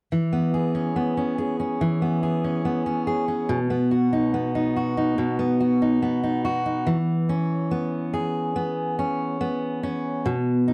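Pop excerpt with an emotional, hopeful mood, carried entirely by a lone fingerpicked steel-string acoustic guitar that sits up front with a bright, full-bodied jumbo tone and the sparkle of fresh strings. The harmony opens on an E6 chord and moves to B at 3.5 seconds, with a new section arriving at 6.9 seconds. Light reverb adds a touch of space to an otherwise dry, close recording with a 1970s studio character.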